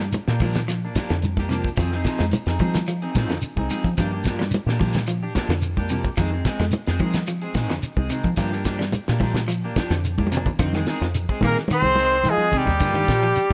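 Funky and intense, this afrobeat clip at 109 BPM in F dorian rides a groove that moves between Gm7 and Fm7, built on a dry, damped 70s drum kit with a fat snare and tight kick up front, a dark, round, punchy fingered bass, soft-handed congas with a bright thin skin, and a grainy shekere in the background. A clean electric guitar picks arpeggios in the background while a twangy, slightly broken-up electric guitar with subtle chorus adds stabs. After a drum fill at 10.2 seconds, an edgy, forceful tenor saxophone enters at 11.4 seconds and a close-miked trumpet with light vibrato takes the melody at 11.5 seconds, all under light reverb.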